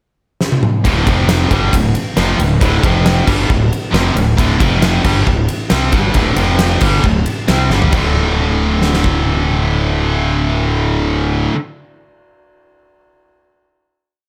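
Set in a small room ambience, this powerful, anthemic hard rock piece at 136 BPM opens with a drum fill at 0.4 seconds on a huge arena kit with a fat snare, punchy kick and bright cymbals, before an up-front, double-tracked, high-gain guitar enters at 0.8 seconds with a power-chord riff between D5 and F5, doubled by a driving eighth-note fuzz bass, until everything rings out on a final chord from 7.9 seconds.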